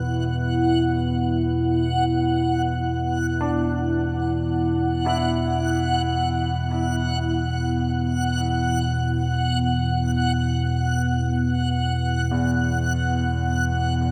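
Desolate and unsettling, this dark ambient drone drifts in free time, heard as a 14.1-second fragment of a longer piece resting on an E5 chord. Up front, a deep, ominous rumbling drone in the low register anchors the sound from start to finish with its slow attack and long release. Above it, a moody, full-bodied pad built from detuned sawtooth layers and a sub octave holds sustained chords, thickened by chorus. A concert grand piano plays arpeggios through delay, its intimate tone carrying audible action noise and deep bass. High above, a reversed, granular texture swells with a dreamy, bright shimmer on a single sustained note. The whole mix sits in a huge, wet reverb that lets every sound hang in the air for a long time.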